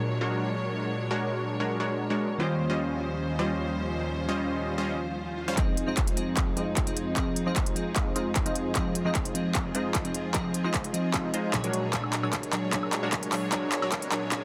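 Dense, heavily limited and lightly reverberant, this bittersweet, emotional future bass excerpt in F minor moves at 151 BPM with a half-time feel, as glassy digital keys with chorus and delay and clear, bowed symphonic strings hold sidechain-pumped chords under a punchy, detuned supersaw stab riff, until a very quiet swell at 5.0 seconds brings in a distorted, layered electronic kick and a crisp, up-front trap kit of handclaps, hi-hats and woodblock for a build-up driven by filter sweeps on the supersaw and strings through to 14.4 seconds, with the quiet riser returning at 14.0 seconds.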